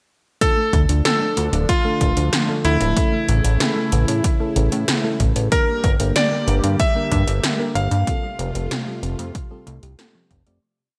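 Set in light reverb and digital ambience, this moody, cinematic synthwave piece puts a bright, cutting electric grand piano riff up front over a galloping, nasal chorused synth bass with sidechain pumping, a punchy overdriven electronic kick and 80s electronic pad drums with a gated snare and metallic hats, while a swirling phased analog pad, a tine-like thumb-piano-style synth pluck arpeggio and dark, dotted-rhythm stabs from a mellow FM electric piano sit in the background before the whole piece fades out from 7.2 seconds.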